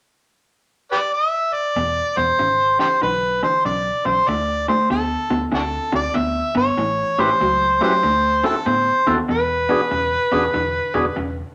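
A roomy studio reverb surrounds this swaggering, laid-back fragment of an electric blues shuffle at 96 BPM with a swung feel, moving through E7, D5, A7 and D7 back to E7. An up-front, gritty amplified harmonica leads the jazz-style melody from 0.9 s with tongue slaps, scooped notes and light vibrato. At 1.8 s a dark, slightly broken-up guitar riff joins through a small old amp with spring reverb, over a round, punchy foam-muted bass, and at 7.2 s a full, lightly overdriven tonewheel organ fills in the accompaniment through a slow rotary speaker.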